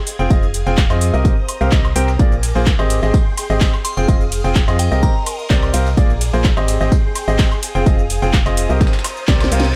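A digital ambience frames this excerpt of bittersweet, energetic piano house in C minor at 127 BPM in a straight 4/4. A punchy, up-front electronic kick and a hollow, organ-like FM bass with tube saturation drive the low end, the bass pumping with the sidechain, while a tape-warm house kit adds cracking snare, metallic hats, handclaps, ride, shaker and woodblock, and a very quiet, gritty sampler-style soul kit layers hi-hat, snare and tambourine underneath. A clear, present, polished baby grand piano plays the riff through delay over a cycle of Fm7, Cm7, Bb7 and Abmaj7, and a shimmering vintage string machine of violins holds sustained chords in the background with ensemble chorus and 12-bit grit. From 3.8 to 5.4 seconds a glassy, crystalline synth bell adds a brief melody through chorus, phaser and delay. A reverse cymbal rises from 9.1 seconds into a closing drum fill.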